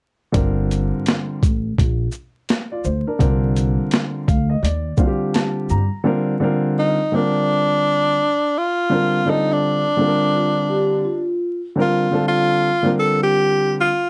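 A clear, close-miked tenor saxophone with vibrato and a soft attack carries the solo melody from 6.8 s in this smoky, mellow jazz-hop excerpt, once a gritty, pitched-down boom bap kit with a thumpy kick and high-tuned snare and a woody pizzicato upright bass stop at 5.9 s, leaving a dark, vintage upright piano under the horn and a brief metallic, ringing soft-mallet vibraphone line at 10.3 s, set in a small room with vinyl crackle.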